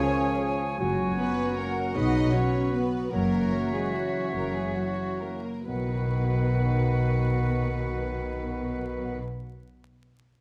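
A moderate recital-hall reverb and a layer of vinyl crackle frame this brief cut from an elegant, sweeping orchestral ballroom waltz in B major, moving in 3/4 with a rubato feel between 124 and 166 BPM. Warm, focused violins carry the melody, while a second, smoother violin line sits in the background; an airy silver flute with lifted highs, a present oboe and a dark clarinet in the background add further lines. A mellow, distant bassoon and very quiet violas fill out the accompaniment, as dark French horns and tight trombones hold sustained chords and shadowy, roomy trumpets add stabs. A thumb-plucked concert harp rings through arpeggios until 9.8 s, and from 0.8 s lush cellos and gently gliding double basses lay down the bass. The tempo slows between 2.5 and 5.7 s, where the harmony moves from F#7 back to B as a new section begins.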